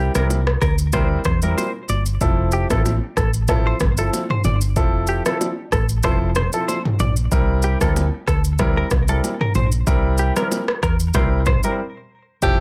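A lightly swung sixteenth-note afrobeats groove in 4/4 rides on a deep house drum kit with an overdriven deep kick, rim click, shaker and toms, while a dark, round, punchy hollow-body bass sits up front and distant bongos and congas add a soft acoustic layer in the background. A polished grand piano comps through C7 and Fmaj7 chords, and a twangy, compressed clean electric guitar riff colored by chorus and delay carries the hook until a short break at 11.8 s. The breezy, sunny excerpt, set in light reverb, closes as a bright alto saxophone with vibrato and scooped notes enters at 12.4 s, just as the piece is cut off.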